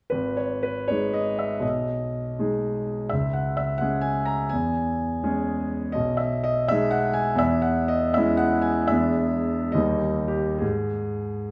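A high G#5 rings out at 0.1 s from a bright, brilliant concert grand piano, placed up front with deep bass and long sustain, opening a brooding, passionate romantic character piece for solo piano in a rubato 6/8 that reaches a D# chord at 9.7 s before breaking off at 11.5 s, cut from a longer work and heard in a moderate recital-hall reverb.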